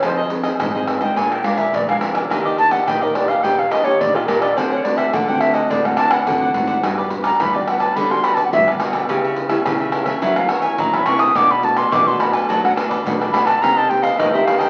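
A straight 4/4 samba-and-choro groove at 106 BPM, driven by a deep surdo, tube shaker, pandeiro and tamborim played with hard hands, with a drum fill at 6.0 seconds, carries this lively, sunny excerpt, where an airy, reedy concert flute sings the tongued, straight-toned lead up front over a crisp, bright cavaquinho in the background, a fingerpicked classical nylon-string guitar and a thumb-plucked nylon-string bass, all bathed in a large studio reverb and the crackle of a very old 78 rpm record as the chords wander from Fm7 through Gmaj7 to Cm7.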